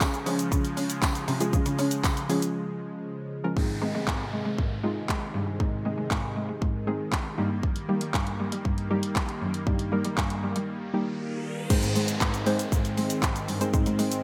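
Bright, 1980s-style digital production with light reverb and a sheen of digital ambience frames this upbeat, summery dance-pop excerpt, cut from a longer piece. A punchy, layered electronic drum kit sits up front, its kick, handclaps, hi-hat, shaker and crash cymbal wrapped in gated reverb, while a jingly acoustic tambourine plays in the distant background until 2.2 seconds. A single bowed cello carries the bass with an earthy, nasal bite, light vibrato and an airy bow, breathing with sidechain pumping. Alongside it, a mellow, detuned supersaw holds smooth sustained chords through analog chorus, and a soft, round filter pluck with a fast attack and decaying notes sits darker in the background, also treated with chorus and pumping. The harmony moves from Db to Ab at 3.6 seconds, then through Eb and back to Ab, with brief breaks along the way and an electronic downlifter and riser joining from 3.6 seconds.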